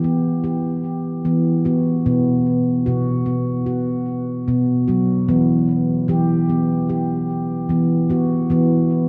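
World meditative music built on tuned percussion, this short cut from a longer piece moves at 74 BPM in 4/4 with a light swing on the sixteenths, settling in E minor with a tuning of A4 = 442 Hz. The mood is hypnotic and gentle. A solo handpan carries everything across the full 9.1 seconds, ranging from B2 to G4, its stainless-steel tone ringing and smooth under the fingertips, dark and up front in the mix. A diffuse ambient delay trails its notes, and a wet cathedral reverb with a 4.3-second decay surrounds the sound in a deep, resonant space. The harmony rests on Em, moves to B5 at 2.1 seconds, and returns to Em at 5.3 seconds, giving the passage a calm, circling feel within a dusky, warm production.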